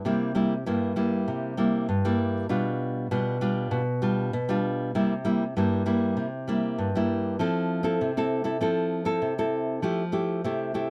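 A fingerpicked nylon-string guitar plays alone from 0.1 to 10.9 seconds, setting a playful, festive samba groove at 98 BPM in F major with a classical touch. The guitar sits up front with an acoustic, warm tone, moving through C7, G7/B and Fmaj7 before settling on Fmaj9. A moderate studio reverb and a dark production give this brief cut from a longer piece an intimate glow.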